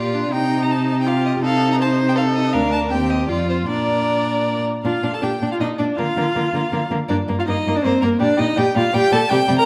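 In a rubato 3/4 at 162 BPM, this graceful, spirited classical-period string quartet movement in Bb major, cut from a longer piece, sets a rich, focused first violin with vibrato on the melody from Bb4 to Bb5 over an intense second violin with light vibrato, a distant viola in accompaniment and a smooth, up-front cello bass, each part bowed by one player in a wet recital hall, as the harmony moves from Cm to Bb by 3.7 seconds and toward Gm at 7.1 seconds.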